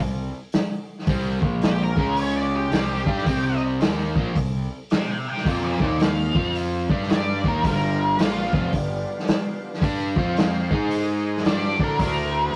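A swung 4/4 groove at 110 BPM drives this swaggering blues rock and southern rock excerpt, with a muffled, rolled-off vintage drum kit of tight kick, medium-tuned snare and hi-hat sitting up front beside a growly, punchy fuzz bass and a crunchy, double-tracked overdriven rhythm guitar riff. From 1.6 seconds a dark octave-fuzz lead guitar with wah takes a solo over the riff. At 7.6 seconds a gritty overdriven tonewheel organ slips in behind with thick sustained chords through a slow rotary speaker and chorus vibrato, all captured in a rough rehearsal-room sound with warm saturation and moderate studio reverb.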